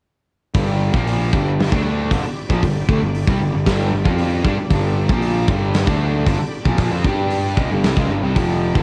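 A home cassette recording with light reverb and a small-room ambience carries this swaggering, energetic hard rock passage in G mixolydian, a short cut from a longer piece that moves at 115 BPM in a straight 4/4 and rests on a G chord throughout. Up front, a punchy acoustic drum kit with a bright stone-room sound and a medium-tuned snare drives hi-hat, kick and snare, while a fuzzy, overdriven picked bass and a bright, compressed, distorted electric guitar riff hit hard from 0.5 seconds. Beneath them sit a very quiet double-tracked sludgy guitar, a very quiet hollow-body semi-hollow guitar that joins at 0.6 seconds, and a thick, gritty tonewheel organ holding sustained chords through a slow rotary speaker with chorus vibrato.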